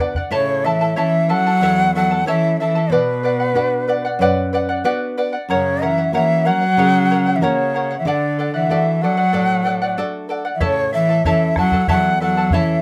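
Andean folk in a straight 4/4, this short cut from a longer piece has an earthy, wistful mood, carried by a bright large quena whose airy, woody end-blown tone, soft attack and vibrato sit up front with the melody from 0.3 seconds. Beneath it, a clear cello played by one bowed player adds a second line with a biting edge and light vibrato, also forward in the mix. The charango's shimmering double strings, some doubled at the octave, are fingerpicked as accompaniment, joined by a fingerpicked nylon-string guitar with a classical character and audible finger squeak. The round, close bombo sounds only in a brief touch at the start and again from 10.6 seconds. The harmony moves through A, Bm, F# and D before returning to A, all in a moderate studio reverb.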